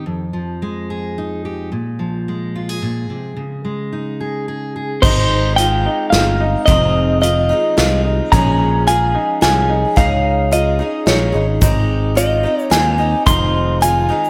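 Indie folk in 3/4 at 109 BPM in Ab major, nostalgic and anthemic, opening with a lone fingerpicked steel-string acoustic guitar, full-bodied and up front, over Fm7, Bb5 and Dbsus2 chords. At 5.0 seconds the arrangement builds into a big arena sound in a lush hall: a clean, compressed electric guitar carries the melody through harmonic tremolo, slapback echo and digital delay, a shimmering octave-doubled twelve-string with finger squeak joins in, a worn, slightly detuned upright piano adds woody arpeggios with audible action noise, a growly picked bass sits up front, and a natural country drum kit brings dark cymbals and a tight kick. A grainy egg shaker slips into the background at 11.6 seconds as the chords cycle through Abmaj7, Fm7, Bbm7 and Dbsus2.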